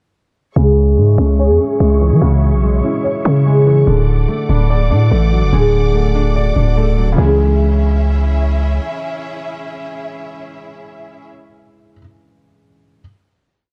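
From 0.6 seconds, this ominous, half-time drill beat at 145 BPM in C# phrygian sets a looping, thumb-plucked concert harp melody with digital delay over a worn, boxy baby grand piano arpeggio, a lush bowed string pad and an up-front, growling 808-style bass with sliding sub notes, the harp, piano and strings muffled by a low-pass filter while a filter sweep runs to 7.2 seconds, moving from C#m to D and back to a final C#m chord before the piano ends last at 13.0 seconds.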